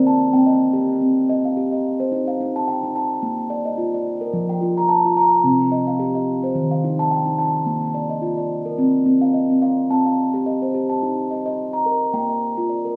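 A hypnotic, meditative piece of world tuned percussion in C dorian at 108 BPM in 4/4, with a gentle swing on the sixteenths, this 13-second excerpt from a longer piece features a solo steel tongue drum struck with rubber mallets. Its tone is round, pure, dark and smooth, ringing up front with a tape echo, while a small, wet room lends a short, close ambience. The harmony cycles calmly through Cm, Eb, Bb and F before the phrase shifts at 9.9 s and settles back among Eb and Bb.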